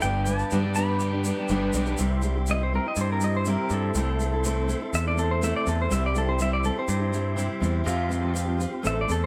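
A twangy, fingerpicked pedal steel guitar carries the melody and takes a solo from 2.0 s, its clean slide tone shaped by volume swells, in this hopeful folk rock and heartland rock passage cut from a longer piece. A bright, up-front picked acoustic guitar and a direct electric bass drive the accompaniment, while a double-tracked, overdriven electric guitar riff plays only until 2.0 s and a grainy, close shaker ticks along. A tonewheel organ with key click and slow rotary speaker holds sustained chords in the background, and the band sounds as if playing live in one room with moderate reverb.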